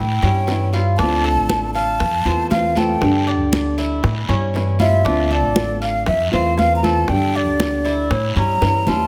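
A breathy, hollow jazz flute sings a sultry D minor melody over fingerpicked nylon-string guitar, the mellow, metallic arpeggios of a Cuban tres treated with tape echo, and a woody pizzicato upright bass up front in this danceable 118 BPM son and guajira excerpt, as bright, high-tuned congas and tight bongos slip into the background at 0.2 seconds, a raspy guiro joins at 0.5 seconds, and a drum fill at 8.6 seconds closes the A7–Dm7–Fmaj7–Gsus2 cycle inside a moderately large studio reverb.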